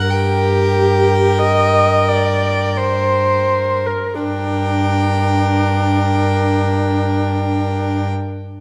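Melancholic and solemn, this slow romantic movement for string quartet in G minor drifts in free time over a G minor chord, easing back over its first 4.2 seconds in a passage cut from a longer piece. A rich, distant first violin sings the melody while the second violin plays a smooth-topped second line, the up-front viola adds intimate accompaniment with vibrato and an airy bow, and the warm, floating cello holds the bass. All four players bow sul tasto with soft attacks, and a wet recital hall reverb surrounds the ensemble.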